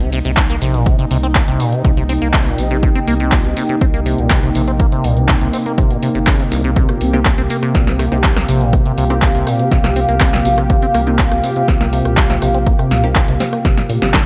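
A gritty, lightly reverberant mix with a digital sheen opens on a hypnotic acid house groove in straight four, cut from a longer piece and resting on a single Cm7 chord. An overdriven, dry electronic kick sits up front, joined by a punchy analog drum machine playing handclaps, hi-hat, rim click and a punchy, overdriven snare in a small room. Underneath, a thick, triangle-based sub bass holds the low end while a squelchy, resonant sawtooth acid bass riff carries phaser, tube saturation, cassette tape colour and tape echo. A smooth, detuned sawtooth pad with chorus sustains the chords, and from 1.2 seconds a moody, warbling vintage pad hangs dark in the background; the pads and both basses share a sidechain pumping. A very quiet, muted dub chord stab with a filter pluck and phaser slips in at 7.1 seconds, and a drum fill at 13.6 seconds closes the passage.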